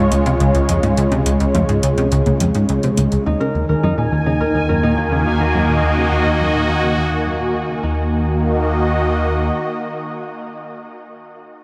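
Ambient, sequencer-driven space music in Eb minor at 105 BPM, cosmic and hypnotic, cut from a longer piece and bathed in a huge, wet reverb. A bright, airy sweeping pad of detuned sawtooth chords sits up front with chorus and shimmer reverb, over a punchy, funky plucky analog bass riff with delay and a round sine sub bass, while a booming analog drum machine with metallic hi-hats and toms plays only until 3.2 seconds. From 3.3 seconds, as the chords move from Db to Ebm and the plucky bass fades out, a thumb-plucked concert harp rings out arpeggios through delay and shimmer, joined by a bubbling, resonant stepped-filter texture high on Ab5.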